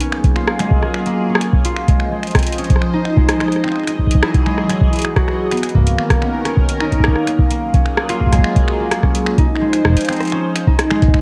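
Worn, warbling cassette tape and light digital ambience colour this glitchy, intricate IDM excerpt at 128 BPM in 4/4, where an up-front, fingerpicked concert harp rings out arpeggios through dub echo over a swirling, evolving, detuned sawtooth pad with phaser and chorus holding maj9 chords that move from F#maj9 through C#maj9, Emaj9 and Bmaj9, while a booming analog drum machine supplies finger snaps, rim clicks and metallic hi-hats and a deep electronic kick joins up front at 0.2 s.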